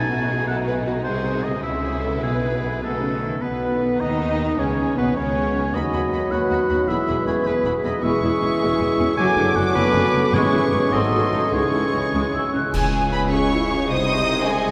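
Moving in a brisk 6/8, this urgent, dramatic passage of romantic orchestral music, cut from a longer movement, sets lush, vibrato-rich violins on the melody over a clear oboe line, with second violins in the background, very quiet violas, ringing harp arpeggios, and a low end of intense double basses and close, rich cellos. Smooth-topped French horns add sustained chords, and at 3.4 seconds a hollow flute, clarinet, bassoon and dark, distant trombones thicken the texture before the harmony turns toward the minor, with a brief, articulate timpani stroke along the way. At 12.7 seconds the opening material returns on an accent of bright cymbals and bass drum, and a roomy tuba joins the bass, all set in a long, wet cathedral reverb.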